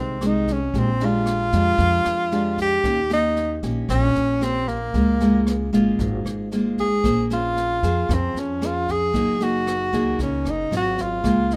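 Sunny and sophisticated, this bossa nova excerpt features a breathy, mellow tenor saxophone up front, singing the melody with light vibrato, subtone and scooped notes, over fingerpicked nylon-string guitar playing chords such as Bb6, Eb7 and Bbm9, a woody, dark pizzicato upright bass, and a natural-sounding small-room jazz brush kit with boomy kick, rim click and snare entering at 0.2 seconds, all in a dry mix.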